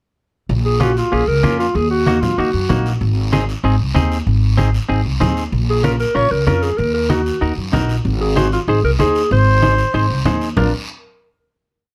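In a dark, moderately roomy studio sound, this short, driving and danceable cumbia rides on a woody, growly pizzicato upright bass figure up front, soft-handed low-tuned congas set in the background and a raspy guiro, with clean, compressed triad chords from a semi-hollow electric guitar, while a breathy alto saxophone with light vibrato and plate reverb states call-like motifs, pauses at 2.9 s, returns at 5.7 s, and the piece closes on a final chord at 10.6 s.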